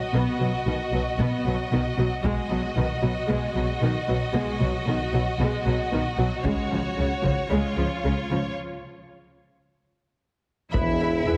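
This is an epic orchestral film score, relentless in straight 4/4, cut from a longer piece that builds steadily before a break near 8.6 seconds. Two rich, lush violin sections carry the melody and a second line, one of them set more distant, while a focused viola section fills in the accompaniment close behind them. Cello and double bass sections anchor the low end with bowed vibrato, the cellos soft in attack and expressive, the basses woody. A close, dry taiko ensemble struck with hard sticks punctuates the strings in short bursts, first at 2.2 seconds, again at 6.4 seconds and once more at 10.7 seconds. At 10.7 seconds the harmony shifts to E as a clear, vintage-toned tuba enters in the background and a mellow French horn section adds sustained chords, also in the background. The whole sits in a moderate scoring-stage reverb with a heavily compressed, radio-like sound.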